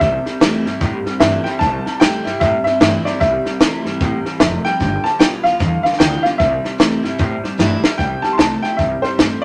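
A retro, rollicking rockabilly excerpt in C major at 150 BPM with a swung eighth-note feel opens with everything together: a clear, woody upright piano carries the melody up front over a dry cocktail drum kit with a high-tuned snare and punchy kick, a pizzicato upright bass, a twangy, slightly broken-up electric guitar riff through a small old amp with phaser, and a full-bodied, picked steel-string acoustic guitar in the background, all in moderate studio reverb, moving from C to G7 at 4.8 seconds and back to C at 6.4 seconds before a drum fill at 7.6 seconds leads into a new section at 8.0 seconds.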